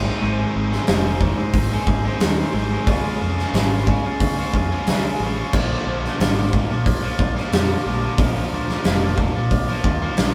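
This is a restless, cathartic stretch of quiet-loud alternative rock, cut from a longer piece, moving at 90 beats per minute in a straight four. It opens with two bright, overdriven electric guitars playing picked riffs together, one biting and one coming through a cranked stack. Beneath them, a growly, fuzz-laden electric bass played with the fingers holds down the low end. At 0.7 seconds a huge arena drum kit arrives up front, its punchy kick, medium-tuned snare, hi-hat and crash cymbal sounding acoustic and natural in a big space. The harmony moves from Ab to Db to Bb, and the band plays live together in a stone room whose moderate reverb gives the whole performance a raw, enclosed weight.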